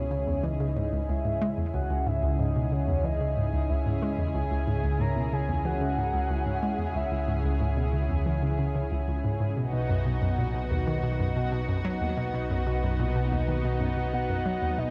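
Expansive and cosmic, this ambient, sequencer-driven space music at 92 BPM in C# minor sets a hollow, bouncy square-wave pluck riff with chorus, phaser and tape echo over a fat analog bass and a lush, airy unison pad whose sustained chords move from C#m to B at 9.6 seconds, while a soft, round octave-layered synth lead with vibrato, chorus, phaser and tape echo carries the melody until 7.6 seconds and returns at 14.1 seconds, the mix sitting in a huge ambient reverb in this cut from a longer piece.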